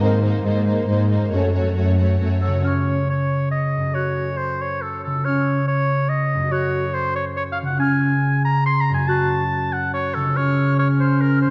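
A straight three-beat pulse drives this adventurous, triumphant stretch of a heroic adventure film score. It opens with a build-up: a dark, distant violin melody over a focused second violin line, intense violas, smooth cellos up front on the bass, and a vintage-toned French horn section briefly in the background, while a ringing, fingerpicked harp plays arpeggios throughout. A clear solo oboe enters up front at 2.4 s, and at 2.6 s the strings give way as a pure, close-miked flute and a mellow clarinet join it on the second lines, all set in a wet scoring-stage reverb.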